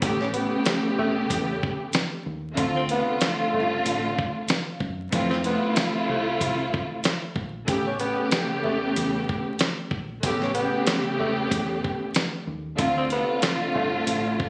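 A gritty, dark boom-bap hip-hop groove at 94 BPM with a swung 16th feel opens on a lush, bowed string section, up front and colored by cassette tape and filtering, over a thumpy, compressed sampler-style drum kit with a fat snare and a round, punchy fingered electric bass. A growling tenor saxophone enters at 0.2 seconds, breathy and raspy with subtone, vibrato and scooped notes, its filtered sound trailed by tape echo as the chords move through A9, Dm7 and Fmaj7. Captured as if on a phone in a moderately reverberant studio room with vinyl crackle, this short passage is cut from a longer piece.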